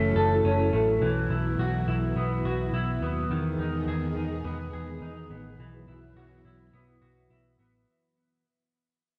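A semi-hollow electric guitar stands out in this melancholic, haunting dream pop excerpt, playing up-front arpeggios through lush chorus and analog delay with a dark, clean, fingered hollow-body tone. Beneath it, a vintage muted picked electric bass sits close and punchy, its foam-muted sound round and amped. A string machine set to cellos holds sustained chords with a slow attack and long release; its sawtooth voice is full and warbling, thickened by a sub octave, a moving notch and ensemble chorus. At a straight 105 BPM in 4/4, the harmony moves from F#m7 to Bsus4, then Emaj7 at 3.3 seconds and back to Bsus4 at 5.6 seconds, all under a fade-out that runs through the whole fragment. A moderate recital hall reverb surrounds a dry, gritty hardware recording with the worn character of cassette tape.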